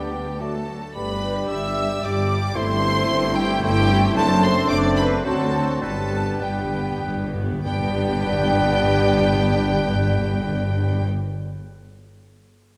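A lively, graceful classical-period orchestral movement in G major and 3/4, cut from a longer piece, opens at 95-114 BPM with a clear, focused violin section carrying the high melody over a smooth background violin section, an airy flute, a distant oboe and a vintage-toned clarinet, while very quiet violas and a mellow bassoon accompany and a faint, roomy French horn section holds sustained chords above a rich cello and double bass foundation, the orchestra set in a wet scoring-stage reverb as the tempo slows from 3.4 s and close timpani on medium mallets play a fill from 5.8 s.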